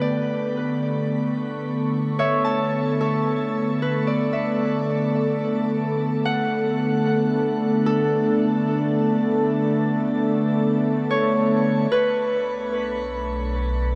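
A smooth, detuned sawtooth pad holds sustained chords with a chorus sheen while an acoustic Celtic harp rings out fingerpicked arpeggios through a diffuse ambient delay, setting a melancholic yet serene ambient mood. At 11.9 s a round, deep analog bass enters on a sustained low note, its wave-folded square and sine tone evolving with a fast attack. A long shimmer reverb bathes the dark production of this excerpt cut from a longer piece.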